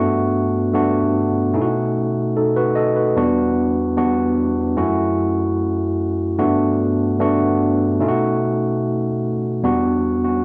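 A bright, barky tine electric piano sits up front and plays alone through this short soul excerpt, its clean, direct tone colored by cassette tape as it moves through a romantic, warm progression of Gmaj7, B7, Em9 and F#m7 in a straight 4/4, set in a wet booth ambience with a touch of studio reverb and the character of a home cassette recording.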